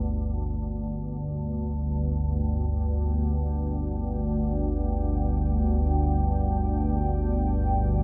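A calm, organ-like drone opens this unsettling dark ambient fragment, sitting up front in a low register with a slow attack, long sustain and an ensemble chorus that thickens its detuned sine tones. At 2.0 seconds a deep, moody pad enters far beneath it in level, holding sustained chords in a higher range. The pad's sound is shaded and complex, built from detuned sawtooth, sine and triangle layers with a sub octave, wave folding and ring modulation, treated with chorus and shaped by a slow attack and a long release. Both parts carry their own built-in reverb, and a huge ambient space with a long 9.3-second decay gives the whole a cavernous, enveloping depth. The music floats freely, cut from a longer piece, and both layers continue to the close at 8.0 seconds.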